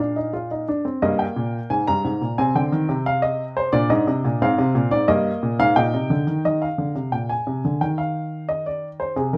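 A dark baby grand piano carries this brief baroque-style fugue in three parts alone, its mellow, intimate tone sitting up front with audible action noise and a short sustain. The piece is classical in style, set in Eb major at 88 BPM in a straight 4/4, and its mood is at once driving and contemplative. Spanning G2 to Bb5, the piano moves through a harmony that opens on Bb, passes through Eb/G, Ab/C and Bb7, and later settles onto Eb before closing on Cm/Eb. The form returns to its opening material at 6.4 seconds after a longer middle passage that begins at 1.0 seconds. A light reverb gives the natural piano sound a modest sense of space in this short excerpt cut from a longer piece.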